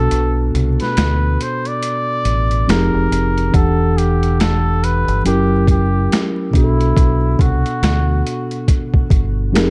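A slow, swung lo-fi hip hop groove at 70 BPM in 4/4 comes from a gritty, pitched-down boom bap drum kit, overdriven and up front, with a thumpy kick, high-tuned snare, hi-hat and finger snaps entering at 0.1 s, and a break runs to 3.5 s. Beneath it a round, dark dub bass and a clean tine electric piano move through Bm7, Fm11, Em11 and F#7b9, while a cup-muted trumpet plays a breathy, veiled jazz melody with light vibrato and tape echo until 8.7 s. Light reverb and a layer of vinyl crackle give this short cut from a longer piece its nostalgic, hazy mood.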